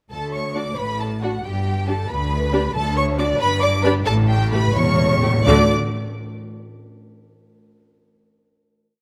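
Lively and spirited, this short, complete classical-period movement for symphony orchestra moves quickly in 6/8 at 90 BPM in the dotted quarters, in D major with a rubato feel. The violins carry the bowed melody with focused vibrato, while a second violin line doubles the tune at the octave with a lush, smooth top. From 0.6 s the violas add a warm inner layer of short accented chords and sustained chords. Cellos play a smooth, even bass on the beats and in sustained notes, doubled by the double basses. The timpani enter at 2.8 s with single strokes on bass notes and rolls into louder sections, playing a fill from 4.1 s before the final D chord at 5.5 s. Close, detailed microphones and a moderate scoring-stage reverb give the strings a present, rich sound.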